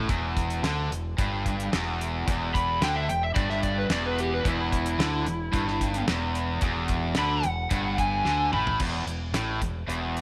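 Two overdriven guitars, one biting and one bright, cranked stack tone, open this sunny, swaggering classic rock cut on a low riff at 110 BPM over a growling fingered bass and a damped, dry 70s drum kit with a fat snare, tight kick and dark cymbals, before an up-front slide guitar enters at 2.5 seconds with a warm overdriven melody that runs until a drum fill hands off to an Esus4 chord at 8.8 seconds, all in a small room with light reverb.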